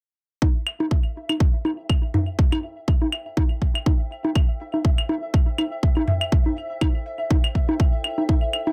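A cool, hypnotic stretch of minimal techno cut from a longer piece opens at 0.4 s with a punchy, tape-warm kick up front, overdriven analog bongos, claves and toms with digital delay, and a soft, detuned, gated triangle texture pulsing in time with chorus, reverb and sidechain pumping. A very quiet, metallic hi-hat slips in at 0.7 s with a light swing, and from 1.6 s a warbly, lo-fi pad with a nostalgic, wave-folded square-and-triangle tone fades in far in the background, its chorus and reverb also pumping. The whole passage sits on a single Am7 chord in a dry, close mix.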